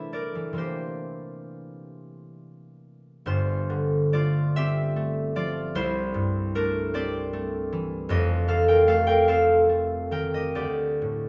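Mysterious and wistful, this brief classical passage for solo concert harp drifts in a rubato 6/8 lilt, taken from a longer piece. The fingerpicked harp sounds ringing and up front, spanning a deep F1 up to G5, while a wet stone-room reverb places the listener further back in the space. An opening section on C69 and C9 gives way at 3.3 seconds to a second section moving through Gm11, C13 and F9 before arriving at D7sus4.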